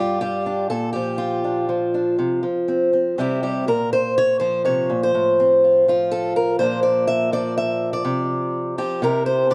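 A bright, fingerpicked acoustic archtop guitar plays alone and up front from the first moment, ranging from G2 to E5 in a pastoral, nostalgic folk passage at 123 BPM in a straight 3/4. Its chords move from G5 through Bb and F5/C to C, then shift at 3.7 seconds to Bbsus2, F/A and Bb before settling on Csus4 and C. A moderate large-studio reverb and a dark, warm production frame this short passage cut from a longer piece.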